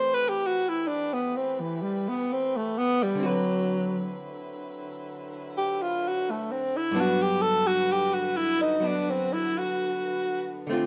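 Swung eighths in 4/4 carry this late-night, tender jazz ballad fragment, where a breathy, mellow tenor saxophone takes the solo melody up front with vibrato, subtone and scooped notes, backed by a dark, clean, hollow-body electric archtop guitar and a soft-attack saxophone section holding warm sustained chords through Am9, D13 and Gmaj7 in a light reverb.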